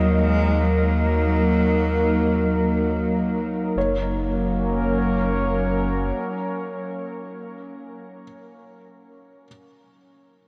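Drenched in a vast, wet reverb and the wobbling pitch drift of worn cassette tape, this peaceful ambient fragment floats in free time, cut from a longer piece. Up front, a nostalgic, detuned pad holds slow-blooming chords with chorus and shimmer reverb, moving from D#m to F# at 3.8 s. Beneath it a round, dark analog bass sits until 6.1 s, a close, bowed cello with rich vibrato sings a brief melody over the first 3.0 s, and a very quiet felt-muted upright piano plays soft, intimate arpeggios through to 9.5 s, its action noise faintly audible.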